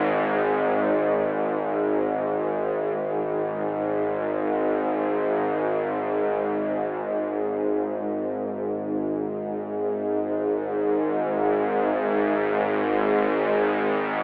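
In free time, this ominous, cavernous ambient fragment from a longer piece, tuned to A4 = 439 Hz, features a lone bowed-like drone from 0.0 to 14.2 s, sustained between G#1 and G#2 with slow-attack, long-release string-like tones that are nasal, sawtooth-edged and tense, thickened by unison, vibrato and a noise layer, sitting bright and up front yet soaked in a wet plate reverb, its own built-in reverb and diffuse ambient delay, while a telephone-like sound colours the dreamy mix as the piece moves into a new section at 3.0 s.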